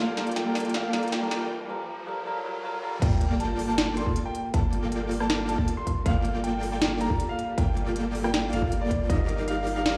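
Emotional and dreamy, this half-time future bass excerpt opens with a bright, brilliant concert grand piano melody pumping under sidechain and digital delay over very quiet, intimate bowed strings, while a bell-like tine electric piano and crisp trap drums gather through a build-up with a drum fill, a filter sweep on the piano and a background riser, then a short break. At 3.0 s the drop hits with an impact and sub drop, a punchy, layered electronic kick and a deep, saturated sub bass joining the huge, detuned supersaw riff, its tape echo and low-pass filter upfront beside a sharp snare. Lush hall reverb and large, roomy ambience surround the mix as the harmony moves from Gm9 to Ebmaj9/G at 9.1 s.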